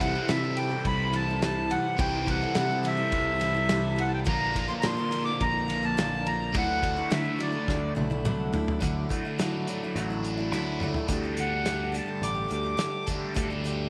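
A reedy, smooth accordion sits up front with the melody in this jangly folk rock and heartland rock fragment, breaking off at 7.9 seconds and returning at 11.4 seconds for a brief solo. Beneath it, a full-bodied jumbo acoustic guitar picks the accompaniment, a crunchy, double-tracked overdriven electric guitar plays a bright riff through a phaser, and a very quiet, flute-like tonewheel organ holds soft chords through a slow rotary speaker. A direct, punchy picked bass and a loose indie drum kit with dusky cymbals and a pumping room sound anchor the groove, with the drums adding a couple of fills, all in light reverb and small room ambience.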